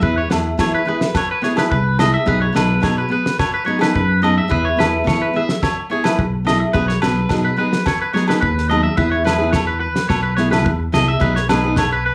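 A straight, danceable 4/4 groove at 107 BPM drives this E major highlife guitar band clip: a dry 70s drum kit with a fat snare and tight kick and a round, dark fingered electric bass carry the pulse, a bright, up-front nylon-string guitar with fresh strings supplies fingerpicked classical-style accompaniment, a twangy, slightly broken-up electric guitar spins picked arpeggios through slapback echo, and distant ringing agogo bells join at 0.3 s, all set in light small-room reverb as the chords alternate between E and B6 before a new section begins at 9.0 s.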